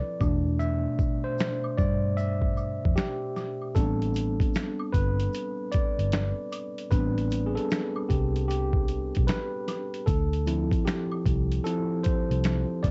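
Captured on home cassette with a light reverb and a dulled top end, this melancholic, nostalgic lo-fi hip hop excerpt moves at 76 BPM in A minor with a swung sixteenth-note feel. A clean, up-front tine electric piano, filtered and tape-softened, carries a solo across the whole clip over E7sus4, Am11 and Dm9 chords. It is joined at 0.2 seconds by a dark, round, foam-muted electric bass and a gritty, pitched-down sampler-style drum kit with a thumpy kick, snare, hi-hat and finger snaps, while a tube shaker and woodblock sit in the background.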